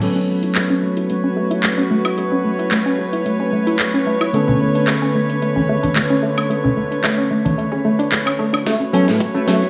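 Nu-disco at 111 BPM in 4/4 with a straight feel, this short excerpt feels sensual and cosmic, moving from A69 to Bm9 at 4.3 seconds and back to A69. A clean, direct tine electric piano plays the accompaniment through tape echo and a low-pass filter. Alongside it, a dark, reedy chamber string section holds bowed chords with a gut-string tone. A round, detuned analog pluck runs arpeggios through chorus and digital delay, with a filter sweep on its sound until 8.7 seconds. Both of these pump with sidechain, as does the piano. A layered house drum kit sits up front with a cracking snare, metallic hats, handclaps, shaker, woodblock and crash, and bright, close congas and bongos with soft hands join from 4.5 to 8.5 seconds. At 8.7 seconds a build-up begins with a drum fill, a filter sweep on the electric piano, a thumpy overdriven electronic kick, and a twangy, slightly broken-up electric guitar riff, all set in a moderate echo chamber reverb.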